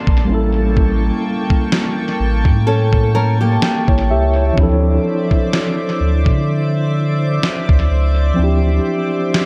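Contemporary R&B at a slow 63 BPM with a lightly swung 16th feel, this romantic, smooth passage sits on a break that moves from A7b9 to Dm9. A mellow tine electric piano and a gritty, compressed sampler-style drum kit with thumpy kick and fat snare, both fed through tape echo, sit up front with a round sine sub bass, while a shimmering, retro chorused pulse-width pad holds sustained chords and a faint electronic downlifter murmurs beneath at the start. The electric piano plays a fill from 2.7 seconds as a fingerpicked nylon-string guitar adds full-bodied arpeggios with tape echo until 4.5 seconds, and the kick drops out at 8.4 seconds in an echo-heavy mix with light reverb.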